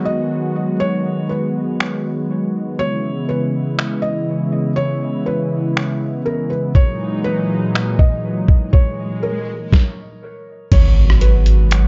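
From the outset, a detuned sawtooth analog pad holds smooth, chorused chords with sidechain pumping, while a felt-muted upright piano plays a soft, intimate melody trailed by dub echo, its action noise audible. A half-time hip hop groove from a compressed, muffled sampler-style kit joins them at 1.8 s, its thumpy kick, medium-tuned snare, rim clicks, finger snaps, hi-hat and crash sitting up front with a large room around them. An electronic swell sits in the background from 8.7 s before an impact at 10.7 s, when a deep, boomy sine 808 bass enters to close this hazy, spacious atmospheric cloud-rap excerpt, mixed dry but echo-heavy and rolled off in the highs.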